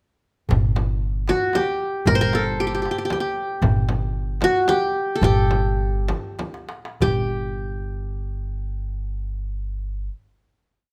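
The rhythm is a straight 3/4 pulse between 93 and 116 BPM, carried by darbuka and frame drum playing patterns of low and high strokes, while the upright bass plays pizzicato on the low drum strokes. This complete piece in the Arabic maqam ensemble style feels soulful and hypnotic. The qanun joins at 1.3 seconds, up front with a bright-edged, plectrum-plucked modal melody full of ornaments, set above the woody steel-string bass. The darbuka sits in the background with a crisp metal-shell sound and hard hands, and the frame drum sounds deep, large, close and dry. The tempo slows from 3.6 seconds, a drum fill leads into a final note at 7.0 seconds, and the recording uses light reverb and close, detailed microphones.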